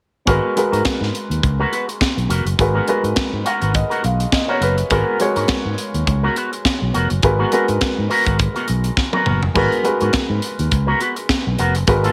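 A tight funk drum kit drives a 103 BPM disco groove in 4/4, with a light 16th-note swing giving the beat a supple lilt under its high-tuned snare, tight kick, hi-hat, splash cymbal and toms, all set in gated reverb. A round, amped fingered electric bass sits up front beside the drums, rooted in G# minor around a G#m9 chord. An electric guitar with an envelope filter adds bright, twangy, clean picked accompaniment soaked in a lush chorus. A warm, natural baby grand piano fills out the harmony and takes a fill at 3.2 seconds, while the drums break into a fill of their own at 9.0 seconds. The mood is glamorous and driving throughout this short excerpt from a longer piece, carried by a studio ambience.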